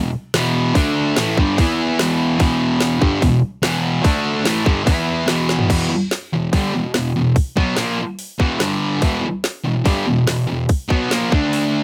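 A thick, bright, double-tracked fuzz guitar drives a swaggering riff over E5, D5 and G5 at 145 BPM in this rowdy garage rock excerpt, and both it and a layered, electronic-sounding drum kit sit up front, the kit entering at 0.3 s with its tight kick, woody snare, metallic hats, crash and toms and throwing in a fill at 5.5 s just before the riff moves into its second passage, all in a lightly reverberant room.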